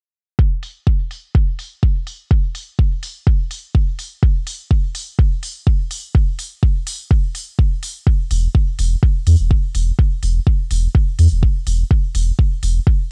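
A deep, layered electronic kick drum sits up front in this nocturnal, hazy dub techno excerpt at 125 BPM in 4/4 with a light 16th-note swing, joined at 0.6 seconds by smooth, low-pass-filtered electronic hi-hats set further back, while a round, mellow sine sub bass with a fast attack and sidechain pumping enters up front at 8.3 seconds, all in a dry, gritty hardware recording with transformer saturation.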